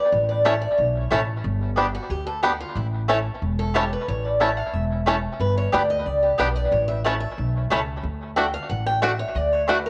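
A twangy, fingerpicked bluegrass banjo carries the melody in this virtuosic, rustic bluegrass passage in A mixolydian, cut from a longer piece, racing along at 182 BPM in a straight 4/4 over A and G chords before turning to D at 8.0 seconds. A boxy, up-front archtop guitar drives the picked accompaniment, the double-strung mandolin adds bright stabs, and a woody pizzicato upright bass holds down the low end. Cassette tape colours the guitar, mandolin and banjo, the banjo also carries tape echo, and a moderate spring reverb washes over the homemade cassette recording.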